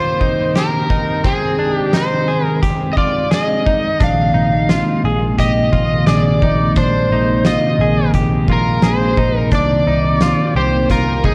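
A straight 4/4 pulse at 87 BPM sets an unhurried pace for this ethereal, dreamy slice of dream pop in Bb mixolydian, cut from a longer piece. An oversized, low-tuned drum kit enters at 0.2 seconds with a punchy kick, fat snare and hi-hat, its gritty, saturated sound filling a pumping big room. Up front, an overdriven slide guitar played with fingerpicks carries the melody with delay. Beneath it, a string machine in cello voicing holds sawtooth chords with a sub octave, soft attack and long release under ensemble chorus, while a bright, twangy clean electric guitar, recorded direct and compressed, picks arpeggios through lush chorus and delay. A dark, round, foam-muted picked bass arrives at 4.0 seconds as the harmony moves from Cm7 and Abmaj7 to a lingering Bb9sus4 before returning to Cm7 at 9.5 seconds. The whole track sits in a moderate concert hall reverb and carries the worn, warbling pitch drift of old cassette tape.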